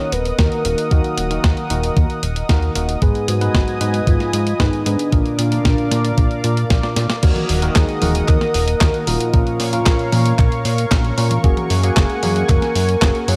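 Melodramatic and bittersweet, this italo disco excerpt moves at 114 BPM in a straight 4/4, set in Eb minor and cut from a longer piece. A soft, round, octave-layered synth lead carries the melody with vibrato, chorus and digital delay, floating over a smooth, slow-attack analog pad that sustains chords with its own chorus. A worn, slightly out-of-tune tine electric piano plays stabs through a combo amp, while a fat, thick analog bass with detuned sawtooth and a filter sweep anchors the low end. The loudest part is a thumpy, tape-warm electronic kick drum, heard alongside a clean 12-bit drum machine supplying a medium-tuned snare, handclaps, hi-hat, toms and crash, both set in small room ambience. The harmony moves from Ebm through Abm to Bb, and a drum fill at 6.8 seconds leads into a second section at 7.2 seconds that moves through Ebm, Bbm and Gbadd9.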